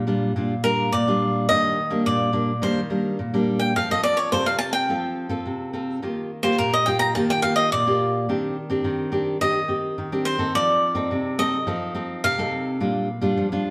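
Sunny and lively, this brief samba fragment cut from a longer piece moves at 106 BPM in a straight 4/4, with a bright, crisp picked cavaquinho carrying the melody up front from 0.6 seconds over a warm, fingerpicked nylon-string guitar with fresh strings and audible finger squeak that plays classical-style accompaniment from the start, through chords from Gm7/Bb and Ebmaj7 to F7 and a closing Bb6, all played live together in a stone room whose reverb rings for 1.4 seconds.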